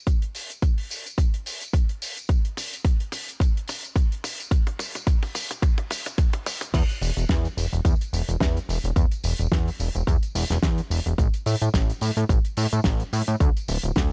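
A dry sound with little reverb frames this cosmic, groovy nu-disco excerpt at 108 BPM, where a punchy, layered electronic kick sits up front beside a damped 70s kit with a fat snare, rolled-off top, hi-hat, tambourine, toms and crash playing a drum fill through the build-up. At 6.7 seconds the drop arrives with a thick, sawtooth-and-triangle analog bass, detuned and wave-folded with a filter sweep, sustaining low and prominent over the swung 16th-note groove until 14.1 seconds.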